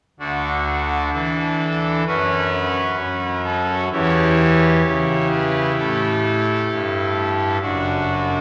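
Worn, warbling cassette tape with a drifting pitch colours this short cut from a longer piece, wrapped in a lush church reverb with a faint small-room ambience. A solo pipe organ, sounding its brassy trumpet stop up front in a bright, romantic voicing, plays a reverent, majestic chorale in a free, rubato 4/4, spanning from deep bass notes to the upper treble. Its chords move from D through F#5 and A7/E to settle on D/F#, with the organ sounding from 0.2 to 8.4 seconds.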